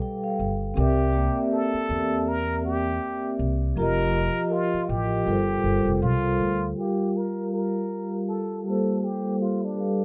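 A mellow, soft-mallet vibraphone opens this reflective, hazy lo-fi hip hop excerpt at 80 BPM in G minor, its ringing metallic tone shaded by cassette tape and a low-pass filter, with a slow motor vibrato and a swung 16th-note feel. A woody, thumpy pizzicato upright bass on gut strings joins almost at once and drops out at 6.7 s, while a plunger-muted trumpet enters at 0.8 s with a jazz-style solo of wah-wah tones, scooped notes and light vibrato over chords moving from C7 through F7sus4 to Gm11. A filter sweep begins at 6.8 s as the harmony settles on Gm7, and the dark production is bathed in wet studio reverb.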